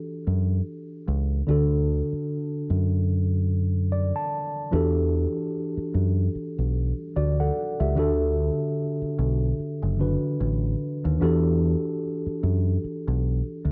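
Longing and late-night in mood, this slow contemporary R&B fragment, cut from a longer piece, sits at 74 BPM in E minor with a lazy swing on the sixteenths. A mellow tine electric piano carries the accompaniment from the start, its worn, slightly out-of-tune voice sounding warm, clean and up front across a span from D3 to A5. A deep dub fingered electric bass enters at 0.3 seconds, dark and round, played direct and amped and sitting just as close. The harmony rests on Em11 before moving to D, and after a short electric piano fill from 3.5 to 4.7 seconds, a new passage opens that turns from Em11 to Bm7 and back to Em11 at 11.2 seconds. Light reverb and the muffled top end of a home cassette recording give the whole a hazy, intimate cast.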